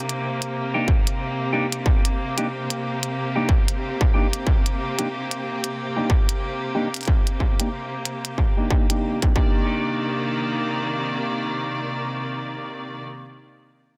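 A swung 4/4 groove at 92 BPM drives this gritty, swaggering glitch hop excerpt in C minor, with a distorted, tape-warm electronic kick and clicky electronic hi-hats up front until they drop out between 9.3 and 9.5 seconds. A rich, smooth chamber string section with vibrato holds sustained chords, opening on a Cm9 and pumping against the sidechain throughout, while a clean, picked electric guitar plays stabs through a low-pass filter sweep and digital delay. Light reverb and a digital ambience sit under a dense, heavily limited modern master, and the piece shifts into a new section at 9.7 seconds.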